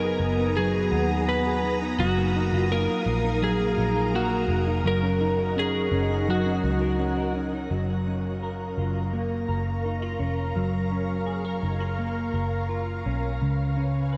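Dreamy and floating, this dream pop passage is cut from a longer piece and drifts on a straight, unhurried pulse under a dark, warm production bathed in a moderate shimmer reverb. A slightly broken-up electric slide guitar, played with fingerpicks and compressed, carries the melody through tape echo until it drops away at 7.3 seconds. Beneath it, a clean semi-hollow electric guitar sits up front with fingered arpeggios wrapped in ensemble chorus and tape echo, while a soft, silky string machine holds slow-attack pad chords with a mellow, evolving glow. A vintage foam-muted picked bass adds a round, dark, amped low end, also near the front of the mix. Very quiet soft-mallet vibraphone rings with an airy, metallic shimmer and slow motor vibrato until 6.4 seconds, and from 7.7 seconds the guitar, strings and bass carry a new section whose harmony settles onto a major seventh chord before a dominant chord near the close.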